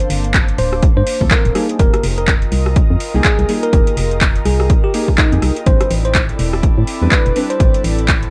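A dry, cassette-toned deep house excerpt with a late-night, deep mood, where a punchy kick sits up front beneath an overdriven kit of handclaps, rim clicks and metallic hats, a hollow organ-like FM bass entering at 0.1 s, soft full-bodied chord stabs, a bell-like tine electric piano melody through tape echo, and two background pads, one warbling and nostalgic with 12-bit grit, the other airy and breathy, all moving over Gm11, Fm11 and Am11 chords with the bass, stabs and pads pumping to the sidechain.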